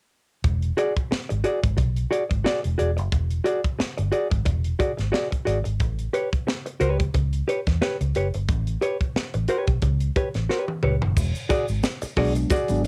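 A lightly swung sixteenth-note funk groove with a gritty, home-cassette character starts at 0.4 s, as a crisp fusion drum kit with a high-tuned snare and tight kick and a round, punchy, foam-muted electric bass sit up front, joined by a dark, compressed hollow-body jazz guitar moving from E9 to A9, before a drum fill leads into a closing passage where a grainy, distant tube shaker enters at 11.2 s and a mellow tine electric piano adds brief stabs at 12.2 s, with the drums, guitar and piano all carrying a cassette-tape tint.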